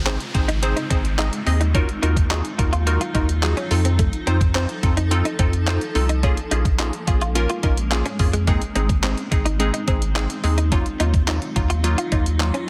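Dance-pop at 107 BPM in Eb dorian, energetic and confident, where a thumpy, tape-warm 8-bit drum machine of kick, hi-hat and handclaps (with a softly clipped snare) and a round sine sub bass sit up front, while a crisp, bright wavetable chord stab with phaser and a blurred, granular cloud pad in the background both breathe with sidechain pumping, joined by a clean direct-recorded electric guitar riff with ensemble chorus, over chords moving from Ab through Ebmadd9, F7 and Bbm7, as a very quiet downlifter runs until 4.0 s in this dense, heavily limited, dry mix.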